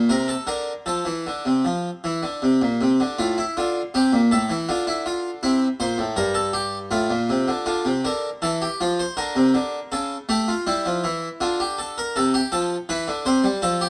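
Driving yet contemplative, this baroque-style two-part invention for solo harpsichord moves at 80 BPM in 3/4 with a straight feel, cut from a longer piece. The harpsichord, a Flemish-style instrument with three sets of strings, sits up front with a close-miked, plucked and brilliant tone, ranging from G2 to C5 across the full 13.9 seconds. It opens in F major, drawing on chords such as Bbmaj9/C, F and Dmadd9, then turns to D minor from 7.7 s, where Dm, A7/C# and Am/C shade the closing phrases. Though the instrument itself is captured dry and full, a moderate stone room reverb of about 1.0 s surrounds it with a resonant space.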